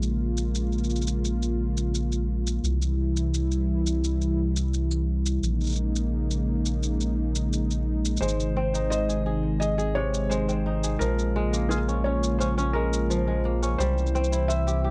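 Delicate and playful, this folktronica excerpt at 86 BPM in 4/4 opens on a smooth, detuned analog pad with chorus, a round, deep analog bass and a small-room electronic shaker over chords such as Bbm7, C and Ab, before a felt-muted upright piano with audible action noise carries a mellow melody and a bright, fingerpicked kora adds ringing arpeggios with tape echo from 8.2 seconds, all in a dry, close 1970s-style studio sound with light reverb.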